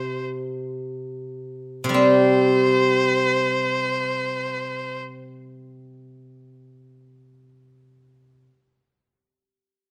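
Graceful and wistful, this excerpt of Chinese traditional chamber music unfolds in free time, tuned to A4 = 436 Hz, and eases into a slowdown across its first 2.0 seconds. A single bowed erhu, up front with a clear, earthy tone, carries the melody around C5 with light vibrato and portamento until 5.0 s, while a steel-string zither played with fingerpicks gives bright, silvery, ringing accompaniment between C3 and C4 and carries on alone until 8.5 s. Close, detailed microphones capture both instruments inside a resonant recital hall reverb of 1.3 seconds.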